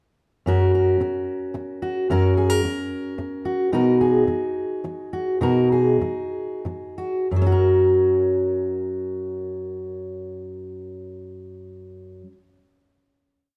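In a straight 3/4 at 87 to 110 BPM, this short, nostalgic and pastoral acoustic folk piece in F# major (tuned to A4 = 443 Hz) features a lone fingerpicked steel-string acoustic guitar from 0.5 to 12.4 seconds. The guitar sounds full-bodied and jumbo-sized, sitting up front in light reverb as it plays a slap-groove fingerstyle interlude that moves from F# to Bmaj7, slowing down between 3.7 and 7.3 seconds. It then settles on a final F# chord from 7.3 seconds.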